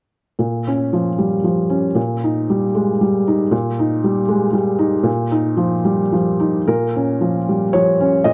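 A dark, warm production places a felt-muted upright piano up front, wrapped in a moderate plate reverb that lets each phrase hang for a moment before fading. This short, reflective piece of neoclassical minimalist piano is cut from a longer work and moves in a gentle three-beat metre, played with a loose, rubato feel. The solo piano enters at 0.4 seconds and carries the whole passage alone, ranging from its low register up into the middle of the keyboard. Its tone is soft, mellow and smooth, with a vintage, intimate character from the felt. The harmony drifts from a minor chord through an added-eleventh chord and a suspended colour before returning home as a brief closing section begins at 6.7 seconds, and the piano falls silent at 8.3 seconds.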